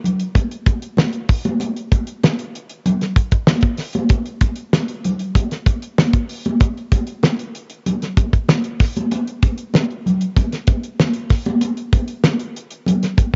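A damped, dry 70s drum kit sits up front with a fat snare, tight kick and hi-hat, its rolled-off top colored by cassette tape, while bright, high-tuned congas with a thin skin ring out in a large room beneath it, giving this short, straight-feel 4/4 soul fragment from a longer piece a bittersweet, silky mood and the small-room, home-cassette sound of a recording that carries nothing above 7.7 kHz.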